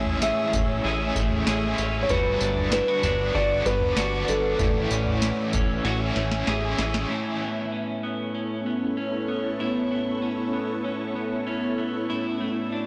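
A felt-muted upright piano opens with the melody, its dark, intimate tone carrying audible action noise and tape echo, while a clean electric guitar picks arpeggios and an airy pad holds sustained chords treated with ensemble chorus, phaser and built-in reverb. This is dreamy, ethereal dream pop at 96 BPM in a straight 4/4, set in A major and moving from Amaj7 to Gmaj7 and back before settling on Aadd9. A cranked stack guitar adds bright, double-tracked accompaniment with overdrive, tremolo and lush chorus, and a plucky analog bass supplies punchy, funky sawtooth-and-square lows with a fast, decaying filter pluck. A booming analog drum machine with a deep kick, tonal snare, tambourine and toms joins at 0.1 seconds and ends the opening section with a fill. At 7.1 seconds the drums and bass drop away. Once the stack guitar fades at 7.6 seconds, the pad and clean guitar carry on toward a Dadd9/A chord before this fragment of a longer piece cuts off at 12.9 seconds. 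The whole sits in a concert hall reverb and comes through a blown-out, saturated recording.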